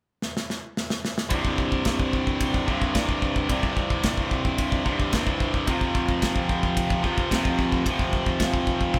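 Heavy metal at 110 BPM in a straight 4/4, aggressive and relentless, taken from a longer piece. A modern studio drum kit opens with a fill from 0.2 to 1.3 seconds, its punchy kick, medium-tuned snare, toms and ride cymbal sounding polished and airy, as if in a small room. At 1.3 seconds a tight distorted electric guitar enters with a picked, double-tracked riff between C2 and F3, bright and up front alongside the drums. The riff sits on C5 before moving to F5 at 5.7 seconds. Light reverb gives the sense of a band playing live together in one room.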